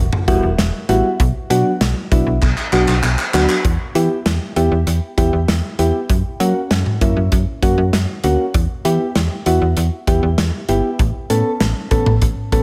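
A snappy FM bass opens this nocturnal, cool synth-pop piece at 98 BPM in 4/4 with a straight feel, its fast, metallic, digital attack decaying as it moves between deep lows and the upper bass range. A modern studio drum kit joins almost at once, its punchy kick and medium-tuned snare sitting up front alongside hi-hat, handclaps, cowbell and toms, all in a pumping room sound. Soft, round electric-piano-like synth keys enter at 0.3 seconds, their mellow tone shimmering with chorus as they carry the harmony from Emadd9 to Bm. A drum fill at 2.4 seconds leads into a new passage at 3.6 seconds, where the chords move through Em, F# and Em before settling on Aadd9. The whole mix is dreamy and soaked in a lush hall reverb, giving the cut from a longer piece a floating, late-night haze.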